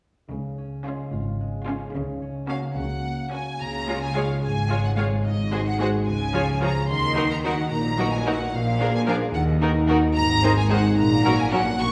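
A close violin section carries the melody with expressive vibrato and portamento in this magical, playful cinematic cue in D-flat major at 73 BPM in 6/8, set over ringing harp arpeggios, a focused and distant second violin line, smooth viola accompaniment, lush cellos in the background and a symphonic double bass section, with the sound held in a recital hall's reverb.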